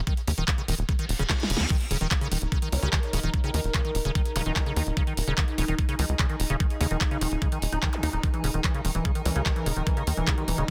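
Psychedelic trance, driving and intense, cut from a longer piece: a knocking, up-front electronic kick and a big-room kit with a huge snare, metallic hats, handclaps and crash push under a tight, nasal sawtooth sequencer bass, while a squelchy, resonant acid bass riff pumps against the kick through chorus and digital delay. From 2.3 seconds an evolving, morphing wavetable pad holds sustained chords with a slow attack and built-in reverb, and a saturated formant-sweep wobble bass sits in the background with dub echo at 2.7 and 9.3 seconds. A reverse cymbal with a drum fill and brief zaps flicker in the background, all inside a dense, heavily limited modern master with little reverb.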